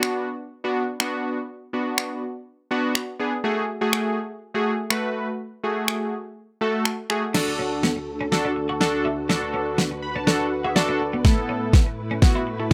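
Dance-pop with an energetic, driving feel in a straight four, cut from a longer piece. Detuned sawtooth analog keys carry the accompaniment up front, round and airy with a vintage warble, a filter sweep, and sidechain pumping beneath their chorus. A smooth, electronic R&B kit also sits up front, with a soft kick, a fat snare, finger snaps and crash cymbal. At 7.3 seconds a build-up begins as the chords move from Bm and F#madd9 to D and Asus2: the drums play a fill, a mellow, organ-like string ensemble enters with soft-attack sustained chords, and a twangy twelve-string electric guitar picks a clean, compressed riff. The keys add a fill at 9.8 seconds, and light reverb lends the mix a modest sense of space.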